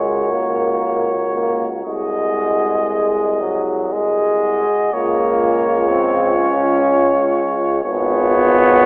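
A mellow cornet carries the melody up front, its smooth top and light vibrato leading this serene, lyrical, hymn-like passage for brass band, cut from a longer piece. The tempo is slow and rubato, in 3/4 at around 58-63 BPM in Db major. The harmony moves from Gb/Db through Ab7/C to Db at 4.9 seconds, then reaches C#7/G# at 7.8 seconds. A French horn section sings a second line in the background with soft attacks, while two euphoniums supply accompaniment: one close and forward, the other distant and very quiet. A tuba anchors the bass from a roomy distance, and every part shares a gentle vibrato and classical poise. The passage sits in a wet church reverb with a thin, telephone-like tone, giving the 8.9-second fragment a filtered, far-off character.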